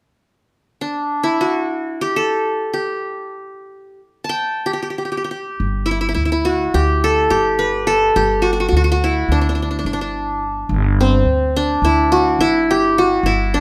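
Turkish music in makam rast on G, festive and passionate at 212 BPM in a straight 9/8 counted in eighths, cut from a longer piece: an up-front, bright-edged qanun with triple strings, plucked with fingerpicks, carries the melody alone from 0.8 s until a woody, thumpy pizzicato upright bass on gut strings joins it low at 5.6 s, both sitting in light reverb.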